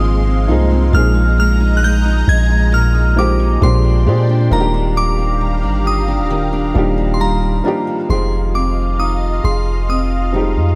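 Bathed in studio reverb, this smooth, romantic R&B fragment in Eb major drifts at 67 BPM, with a deep, up-front 808-style bass sustaining beneath a felt-muted upright piano whose soft, intimate tone carries audible action noise, a fingerpicked steel-string acoustic guitar tracing arpeggios through tape echo, a lush, detuned unison pad holding chords with chorus and phaser, and a glassy synth bell carrying the high melody through chorus and tape echo, its crystalline tone ringing over chords that move from Ab6 through Ebmaj9 before reaching Fm7 at 8.1 seconds.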